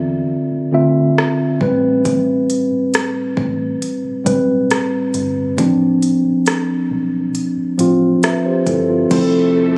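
At a straight, unhurried 68 BPM in 4/4, this moody, late-night contemporary R&B excerpt in D dorian sets an up-front, mellow tine electric piano over a dark, foam-muted fingered bass through Dm9, Am9 and Dm7/A, with an organic electronic kit entering at 1.2 seconds with a deep kick, smooth hats, rim clicks and crash, before a lush, bowed string section with vibrato and portamento and a very quiet, round filtered pluck arrive on Fmaj7 at 9.1 seconds, all captured like a phone recording in the room with light digital reverb.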